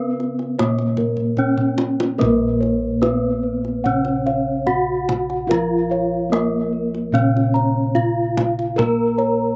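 Recorded outdoors with little reverb and a dull top end, this fragment of a longer Javanese gamelan piece in Bb pelog moves at a stately 73 BPM in a straight 4/4, its bronze tones shimmering gently. Up front and close-miked, a dry, full bronze metallophone carries the melody with a wooden mallet, its paired tuning producing ringing, beating shimmer. Beneath it, a soft, mellow metallophone played with padded disc mallets sits in the background as accompaniment with a vintage, band-limited tone, while round, padded bossed gongs ripple through arpeggios with a slapback echo and a darker, smooth set of gongs anchors the bass. A tight kendang struck with hard hands enters at 0.2 seconds and plays a drum fill from 1.2 to 2.2 seconds. At 2.2 seconds the piece moves into a new section as a second metallophone joins with its own arpeggios, played with padded mallets and carrying paired-tuning shimmer and a slapback echo.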